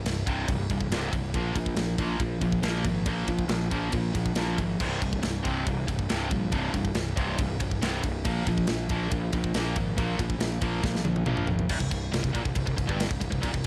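A dry home recording on cassette gives this cut from a longer heavy metal piece its close, up-front sound, with tape colour on the high-gain, double-tracked guitar and the polished metal drum kit. The epic, relentless riff alternates between C5 and Bb5 power chords over a growly, punchy fuzz bass and a tight kick, with bright cymbals and a medium-tuned snare. A drum fill from 10.8 to 11.7 seconds leads into a brief new section that returns to C5.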